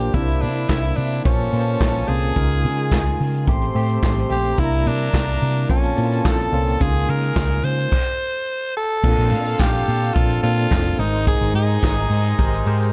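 A raspy, gritty tenor saxophone leads this celebratory, glamorous disco excerpt at 108 BPM, riding over a barky, overdriven tine electric piano with fast tremolo, a round, up-front hollow-body electric bass, a punchy vintage drum kit with handclaps, a gut-string studio string section and very quiet, nasal muted French horns, with an egg shaker joining at 4.6 seconds and a full stop at 7.9 seconds before a new section at 9.0 seconds, all set in studio reverb within a dark, warm production.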